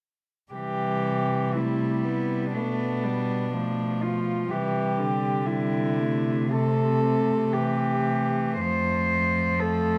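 In a rubato 4/4 at 54-64 BPM, this serene, tender classical passage for cello ensemble, cut from a longer piece, moves in C major through C, G/B and C before settling on F at 8.6 seconds. Four bowed cellos, each a single player with a soft attack and sul tasto tone, sound from 0.5 to 10.0 seconds: a warm, pure melody up front, a clear, nasal second line close by, a rich, distant accompaniment, and a dark, intimate bass with light vibrato. Close, detailed microphones capture the ensemble in light reverb.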